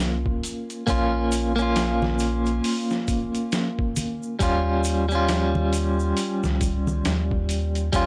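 A clean, picked electric guitar sits up front with tremolo and tape echo over a dark, smoky trip hop groove at 68 BPM with swung sixteenths in Bb dorian, moving from Bbm to Eb7 at 4.4 seconds, while a deep, round dub sub bass with tube saturation, a thumpy, pitched-down sampler-style drum kit in studio reverb, and a hard-handed tube shaker and congas fill out this dry, gritty 8.1-second excerpt cut from a longer piece.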